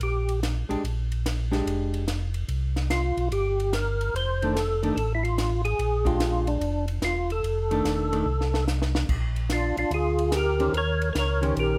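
A fat, percussive tonewheel organ carries the melody up front, its key click and third-harmonic percussion cutting through a slow rotary speaker and chorus vibrato; after a brief opening touch it takes the tune in earnest from 2.9 seconds. This short piece of swinging, greasy soul jazz organ trio is cut from a longer performance and moves in a swing feel. Beneath it, a second organ plays the bass line in a round, dark, clean voice, also through a slow rotary speaker and also placed up front. A dark, hollow-bodied archtop guitar, miked and amplified, comes in at 0.7 seconds with clean, picked accompaniment. A compact cocktail drum kit sits further back in a small acoustic room, with a high-tuned snare, a punchy kick, hi-hat, ride and crash, and it plays a fill from 8.3 seconds into a second pass of the tune. Light reverb frames the trio as the harmony moves through chords such as Bb6, C5, F6 and Bb13, landing on Eb6.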